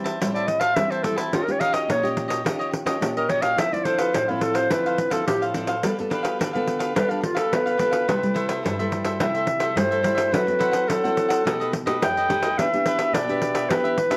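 A clear, classical-style clarinet takes the solo melody up front in this joyful, playful samba and choro excerpt at 107 BPM, carried over a jingly, close and dry pandeiro struck with hard hands, a bright, crisp picked cavaquinho and a warm fingerpicked nylon-string guitar through chords like Am7, Dm9 and G9, all set in moderate studio reverb with the worn, warbling pitch drift of old cassette tape.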